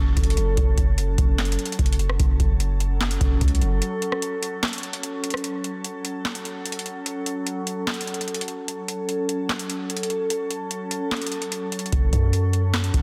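A glassy, chorused FM pad holding ethereal F# minor chords and a boomy, sine-toned 808-style bass open this brooding, melancholic trap excerpt at 148 BPM in half-time, joined at 0.2 s by an up-front, dry analog drum machine with a deep kick, crisp snare, handclaps, rim clicks and metallic hi-hats, while the bass drops away at 3.8 s and returns at 11.9 s, all within a dense, heavily limited master.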